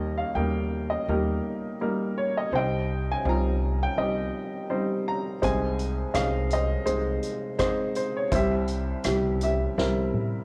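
This acoustic folk-pop ballad opens with an up-front upright piano carrying the melody, its action noise audible and its short sustain set in plate reverb, while a dark, woody pizzicato upright bass sits low underneath. At a slow 83 BPM in a straight 4/4, the harmony moves from Eb to Cm at 2.5 seconds, lending a heartbroken, intimate mood. A soft-mallet drum kit enters at 5.4 seconds, sounding distant and roomy, with a punchy kick, a medium-tuned snare, rim clicks, hi-hat and toms. The drums close with a fill at 9.8 seconds before this fragment of a longer piece cuts off. The whole recording carries the worn, warbling pitch drift of old cassette tape under a light reverb.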